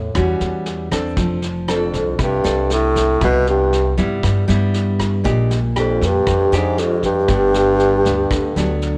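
A roomy, classical-style bassoon carries the melody with light vibrato from 1.7 seconds, joined by a very quiet, airy and slightly unsteady alto flute, over a full-bodied fingerpicked nylon-string guitar with audible finger squeak, a woody, thumpy pizzicato upright bass and a vintage brush kit with punchy kick, rim click and a rolled-off top, all in light reverb, giving this romantic, breezy bossa nova fragment, cut from a longer piece, its gentle straight-feel sway.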